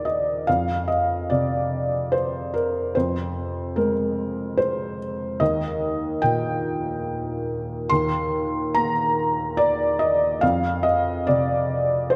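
A felt-muted upright piano opens alone, its soft, mellow tone sitting up front and intimate in this neoclassical minimalist piece. The mood is tender and hopeful, moving at 72 BPM in 3/4 with a rubato feel that lets the pulse breathe. The piano spans a range from Eb2 to C6, and the harmony passes through Fm, Eb6 and F5, with the Eb6 arriving around 5.4 seconds and the F5 near 10.4 seconds. A concert hall reverb with a 1.7-second decay surrounds the instrument, giving its muted voice a sense of space. The tuning sits slightly high, at A4 = 441 Hz, and this brief passage of about 12 seconds is cut from a longer piece.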